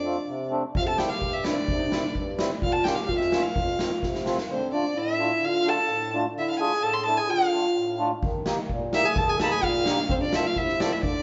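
A straight 2/4 pulse at 128 BPM drives this soulful, bittersweet klezmer excerpt in F major, where a dark, intimate bowed violin carries the melody up front with light vibrato over a distant, roomy clarinet second line and a reedy, round accordion accompaniment, while a boomy, polished street-band drum kit of kick and snare enters at 0.8 seconds, plays a fill just before dropping out at 4.5 seconds, and returns at 8.2 seconds, the live band captured together in a wet studio reverb with a softened top end.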